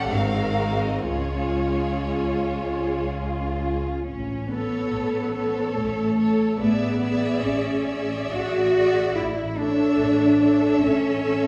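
In a rubato 3/4 hovering between 58 and 75 BPM, this slow, lyrical romantic movement for string orchestra unfolds with a serene calm, moving from Db major to A major at 4.1 s. Expressive bowed violins carry the melody over a second violin line, lush violas with portamento, and smooth, even cellos that sit up front. Focused double basses anchor the bass, every section sings with vibrato, and a wet recital-hall reverb surrounds this short passage cut from a longer piece.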